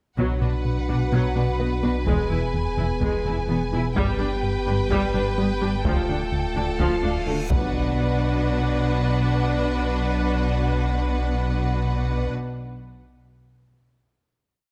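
From the opening moment, a tense, relentless hybrid orchestral and electronic film cue unfolds: lush bowed violin sections carry an expressive vibrato melody and a focused second line over a distant viola ostinato, while dark French horns hold sustained chords and a smooth cello ostinato with woody double basses forms the foundation beneath a deep, clean sine sub bass drone and a punchy, funky analog bass riff with a filter pluck. Hard-stick taiko strokes boom from a large room in the background until 8.4 seconds, and the analog bass drops out at 7.4 seconds. From 7.2 seconds, a huge reverse cymbal rises into a low impact at 7.7 seconds, marking the final hit under light reverb.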